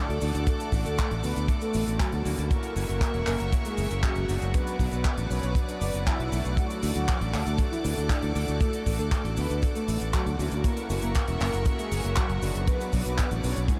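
A punchy, up-front fingered electric bass with tube saturation drives this melodramatic, bittersweet italo disco excerpt at 118 BPM. A dry, tight acoustic kick enters at 0.5 seconds, joining a funk kit of cabasa, handclaps, hi-hat and toms. Above them, a round, brassy synth brass carries the melody through chorus and analog delay, while a glossy, retro polysynth plays chorused stabs in the background and a distant, biting symphonic string section holds bowed chords with light vibrato, moving from D through F#7 to Bm under a huge ambient reverb that leaves the mix dreamy and soaked.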